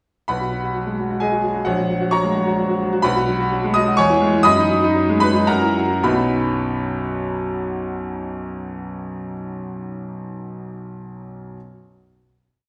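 A clear grand piano opens at 0.3 seconds in this short, complete classical piece, a virtuoso piano study in B major with a sparkling, heroic mood, moving in a rubato 3/4 between 106 and 134 BPM. The solo piano sits up front with a smooth, vintage tone and long sustain, carrying the tune in filled octaves over rippling figuration, and it slows from 2.4 seconds before landing on a final B chord at 6.0 seconds. A wet recital hall reverb gives the instrument the spacious ring of a church or concert hall.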